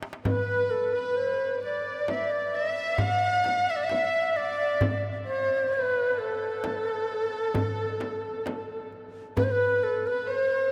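Arabic maqam ensemble music in a stately 10/8 at 132 BPM opens on a crisp, metal-shelled darbuka fill at 0.0 s, with an airy, reedy ney carrying the melody up front with vibrato, a soft-attacked, floating violin section played sul tasto as a second line, and a deep frame drum that drops out at 9.6 s, heard in a vast, echoing space.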